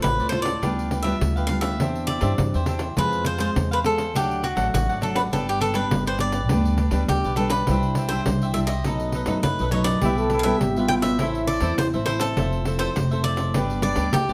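Samba and choro at 102 BPM, lively and joyful, with a bright, crisp picked cavaquinho carrying the melody up front while a second cavaquinho adds picked accompaniment, a fingerpicked classical nylon-string guitar fills in the harmony, and a woody, thumpy pizzicato upright bass anchors the low end under a jingly, close pandeiro played with hard hands. Around 10.0 seconds a breathy trombone with light vibrato and a soft attack slips in for a brief jazz-style second line, ending at 11.6 seconds. The chords move through Dm7, G7/D, Fm and B7 before settling toward Am, Fmaj7 and G, all in a moderate studio reverb, and the passage is cut from a longer piece.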